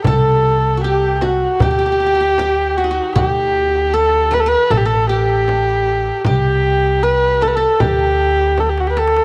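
In a straight 4/4 pulse, this stately, festive Turkish makam ensemble passage, cut from a longer piece, features a dark, intimate bowed kamancheh up front with light vibrato, portamento and tape echo over a bright-edged, fingerpicked qanun in the background, a woody, growly pizzicato upright bass, a very quiet, dry clay-shell darbuka and a small frame drum played with soft hands that stops at 8.8 seconds, shortly after a drum fill begins at 8.6 seconds, all set in a small room ambience with light reverb.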